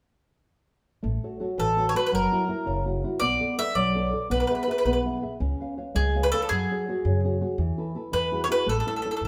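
Lively and romantic, this short cut from an Italian folk serenade sways in a lilting 6/8 with a straight feel. A nylon-string guitar and a pizzicato upright bass enter together at 1.0 seconds: the guitar is dark, woody and full-bodied, thumb-plucked with the deep tone of old classical strings, while the steel-strung bass adds a warm low foundation. At 1.6 seconds a bowl-back mandolin takes the melody up front, its bright, picked double strings ringing clearly above the guitar, which also sits forward in the mix. The harmony moves through colorful chords such as A6, F#7, Bm7 and C#7, then passes through suspended shadings before settling back on A. The trio plays live in one large studio, wrapped in a generous, wet reverb that gives the performance an airy, intimate glow.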